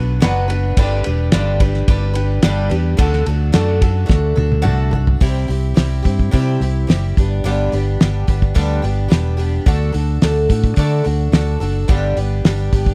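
A cloth-damped, thuddy drum kit sits up front in this hopeful, nostalgic folk rock and heartland rock excerpt, its fat snare, tight kick and dark cymbals carrying a rolled-off top and small-room feel from 0.2 seconds. A fingered electric bass, round and amped, holds the low end up front, while a picked twelve-string acoustic guitar adds a bright, shimmering, octave-doubled accompaniment. The song moves at 108 BPM in a straight 4/4, with chords shifting from Bm to G and D before a drum fill at 4.1 seconds leads into a new passage at 5.2 seconds built on C, G and D. The sound is dry and close, in the manner of a 1970s studio recording, with little reverb.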